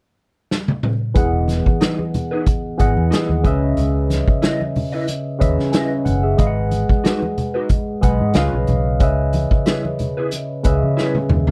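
A dry, close-sounding cut from a longer piece of lush, silky 1970s-style soul with a cinematic mood opens with a punchy vintage drum kit fill at 0.5 s, and by 1.2 s a barky, lightly overdriven tine electric piano with phaser, a dark, foam-muted fingered electric bass and very quiet, low-tuned congas have joined, followed at 1.8 s by a slightly broken-up, lo-fi electric guitar riff with ensemble chorus over a gently swung groove moving through Emaj7, C#m9 and G#m7 before the kit closes on another fill.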